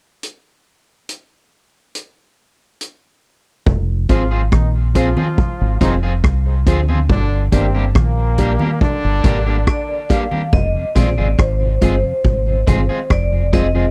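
A dry, close 1970s-style studio sound frames this serious, meditative roots reggae fragment in F dorian at 70 BPM, where a punchy vintage drum kit plays alone with hi-hat, kick and rim click until a round, dark fingered bass and low-tuned congas arrive at 3.7 seconds, joined at 4.1 seconds by a twangy slightly broken-up guitar with harmonic tremolo, reedy electric piano stabs and a brilliant, tight trombone section with tape echo over Fm and Gm, before a ringing vibraphone melody enters at 9.7 seconds and a mellow tonewheel organ on slow rotary speaker murmurs in the background from 10.8 seconds.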